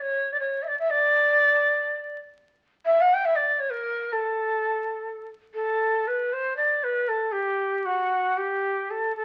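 Passionate and warm, this brief Turkish excerpt features a solo ney in free time, set in makam hicaz on A and ranging from F#4 to G5. The end-blown reed cane sounds breathy and reedy, with a crisp attack, vibrato and rolled-off highs, placed up front in a moderate studio reverb. The recording carries the crackle of a very old 78 rpm record, and the phrase takes a new turn at 5.5 seconds before the cut at 9.2 seconds.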